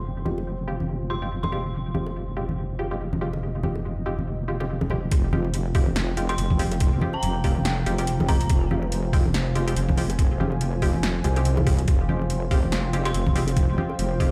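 Deep dubstep at 142 BPM in F minor, moving in a swung half-time feel with a heavy, cavernous mood, cut from a longer piece. A deep, moody pad with vintage sampler grit holds sustained chords from the start, while an up-front, saturated wobble bass with a sawtooth edge sits beneath it and muted, detuned dub chord stabs trail off into echo. Bright, close congas and bongos play in the background from 0.3 seconds, and an eerie, inharmonic FM bell with phaser and echo surfaces in brief phrases, first at 1.1 seconds. The drop arrives at 5.1 seconds, bringing in a pitched-down, thumpy electronic kick and an overdriven kit with a punchy snare and metallic hats, both carrying small room ambience. The whole mix sounds as if played on a big sound system in a bare stone room, with light reverb adding to its dark, subterranean weight.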